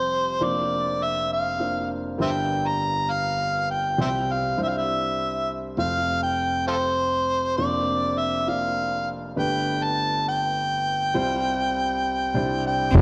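A gritty, overdriven harmonica sings the melody up front with vibrato, scooped notes and tongue slaps over an intimate, boxy grand piano with audible action noise and long sustain in this tender, nostalgic acoustic folk-pop ballad at 100 BPM in 3/4, moving through chords such as Bbadd9/F, Gm7 and Csus4 in a moderate scoring-stage reverb, until a pure, floating sul tasto cello and a dark, round fingered electric bass enter at 12.9 s just as the fragment ends.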